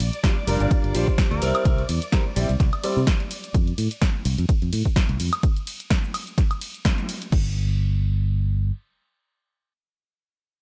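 Groovy and nostalgic, this short cut of filtered disco house at 127 BPM with a light swing opens on a drop where a phased, swirling string machine holds sustained chords in the background and a bright, vintage grand piano joins at 0.2 seconds to play accompaniment, both pumping under the sidechain, over an up-front fingered electric bass, a punchy overdriven electronic kick entering at 0.2 seconds and an analog drum machine of snare, hats, ride, crash, shaker and woodblock, while a loose jazz-style horn section with tape echo flickers briefly in the background, chords move from Gm7 through C7 to F, a band accent lands at 6.9 seconds, and the bass carries on alone to 8.7 seconds in a dark production with light reverb.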